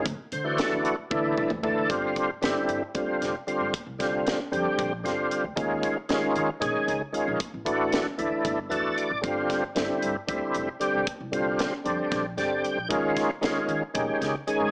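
An overdriven tonewheel organ sits up front in this driving, slick slice of electric jazz fusion, its gritty, thick tone colored by chorus vibrato and a slow rotary speaker as it comps through chords such as Dadd9, G7sus4, C9sus4, Eb9sus4 and A7sus4. The tempo is a brisk 229 BPM counted in eighths, in a straight 7/8 metre, and this is a short cut from a longer piece. Beneath the organ, a pizzicato upright bass with steel strings adds a woody, growly low end, while a crisp fusion drum kit with a high-tuned snare and punchy kick brings an airy, polished studio-room character on hi-hat, snare, kick and toms. A drum fill at 1.1 seconds leads out of the brief opening into the longer main passage, where the organ steps forward with short fills at 8.5 and 12.1 seconds. The whole mix carries a moderate studio reverb and a small-speaker sound.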